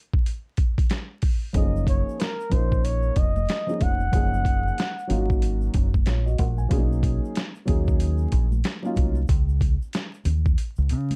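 A gritty, pitched-down boom bap kit opens alone with a thumpy kick and medium-tuned snare, setting a cool jazz-hop groove with a swung feel over vinyl crackle. From 1.5 seconds a round, punchy dub bass, a woody, slightly detuned upright piano with audible action noise, and very quiet hand-struck congas and shaker join, and a moment later a breathy flugelhorn with light vibrato and scooped notes plays a mellow jazz solo. The horn drops out at 5.8 seconds, the chords move through lush major-thirteenth colours to a suspended close, and a drum fill ends this dark, dry, intimate fragment of a longer piece.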